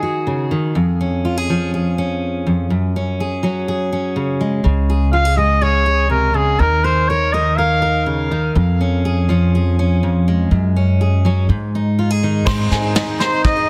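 Indie folk in Db major at 123 BPM, anthemic and uplifting, this excerpt opens on a full-bodied fingerpicked steel-string guitar with audible finger squeak together with a clear, distant trumpet melody with light vibrato and tape echo, joined by a woody, thumpy pizzicato upright bass from 4.7 seconds. At 12.5 seconds the arrangement builds: a close-miked trombone adds a second line, a shimmering octave-doubled twelve-string guitar and an intimate upright piano playing arpeggios sit in the background with a dark, mellow baby grand piano, and a punchy brush drum kit brings crash, kick and a snare with soft clipping. The chords move through Ebm, Db/F and Gbsus2 before landing on Ab, all set in light reverb and studio ambience with a dense, heavily limited modern master.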